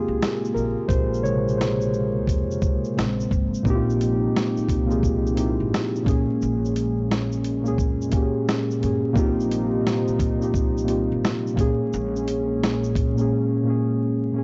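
This lo-fi hip hop fragment, cut from a longer piece, feels melancholic and hazy, with a lazy swing in its four-beat groove. Muted, felt-like synth keys sit up front, their soft, intimate tone blending triangle and sawtooth with a faint noise layer, each note striking quickly and then decaying, colored by chorus and cassette-tape wear. Behind them, a deep, moody analog pad of detuned sawtooth and triangle with a sub octave swells in slowly and holds mellow sustained chords in the background. A woody pizzicato upright bass with steel strings adds a dark low end through gentle tube saturation. The dusty, sampler-style drum kit comes in at 0.2 seconds, compressed and gritty, with a thumpy kick, a medium-tuned snare, hi-hat and shaker. Bass and drums drop out at 13.3 seconds, leaving keys and pad to carry the minor-flavored harmony to 14.4 seconds, all wrapped in light digital ambience, vinyl crackle and a dry, dulled hardware sound.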